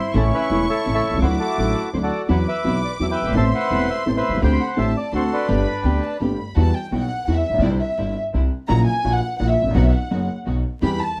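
A reedy, vintage bandoneon carries the melody up front until 6.2 s in this playful, nostalgic rubato tango in 3/4, alongside a dark, softly bowed violin section on a second line that takes a solo from 6.6 s, an open, long-sustaining upright piano, very quiet, biting string stabs and a woody pizzicato upright bass, all wrapped in moderate reverb, a dark, warm production and vinyl crackle.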